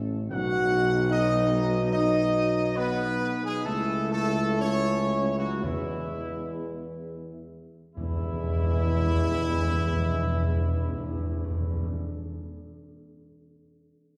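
This regal, solemn classical fanfare begins with a dark French horn section holding sustained chords in the background while a mellow, close-miked tuba anchors the bass up front. At 0.3 s, a warm trumpet section takes up the melody up front, and trombones add soft-attack sustained chords in the background. Timpani played with medium mallets sound close and dry, and the horns, trumpets and tuba carry a light vibrato. The music slows through its opening passage as the harmony moves from B to A over C# and settles on E, then a new section begins at 8.0 s. The horns and trumpets sound distant and roomy in a concert hall with a generous wet reverb, heard from further back in the room, and the clip is cut from a longer piece.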